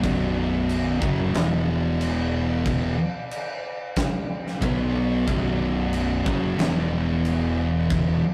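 Stoner and doom metal at 91 BPM in 4/4, this short, sludgy and ominous cut from a longer piece rides a picked riff on two thick fuzz guitars, one dark and up front, the other sitting in the background, moving between B5 and E5 chords. A growling fingered electric bass adds a bright, overdriven, punchy low end, while a big acoustic rock kit with a punchy kick, medium-tuned snare and crash cymbal sounds dark and smooth in a big room. The whole take has the rough feel of a rehearsal-room recording with light reverb and warm saturation.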